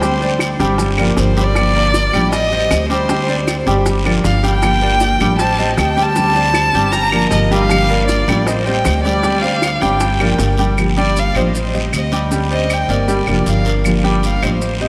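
Danceable and warm, this Cuban son and guajira excerpt sets a bowed, vibrato-laden violin with expressive portamento and analog delay over a dark, thumb-plucked nylon-string guitar, worn grand piano arpeggios with chorus and delay, and an up-front, thumpy pizzicato upright bass, while raspy guiro, grainy maracas, woody claves and round, low-tuned bongos that drop out at 10.6 seconds ride a dreamy hall reverb, the violin taking a solo from 10.8 seconds over a cycling Gm7 to Am7b5 to D7sus4 progression.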